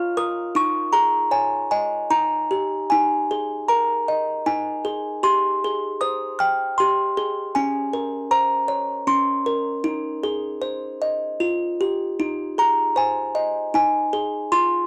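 Sleepy and innocent, this short excerpt of a children's lullaby in Ab major drifts at a rubato 78 BPM in 3/4, carried entirely by a solo music box from a large box whose delicate, tinkling plucked tones sit bright and up front, spanning Db4 to F6 with the soft grain of cassette tape in a modest booth-like room, moving through gentle suspended and seventh chords before settling onto Ab at 12.2 seconds.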